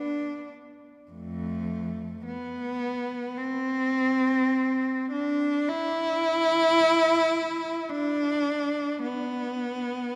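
Rubato timing stretches a slow 4/4 pulse of about 53 BPM in this yearning, lonely classical fragment for a single bowed cello, heard up front from 0.0 to 10.2 s. The rich, expressive tone ranges from F2 to E4, with soft attacks, vibrato and sliding portamento. A long, wet church reverb gives the solo line a spacious, solitary air.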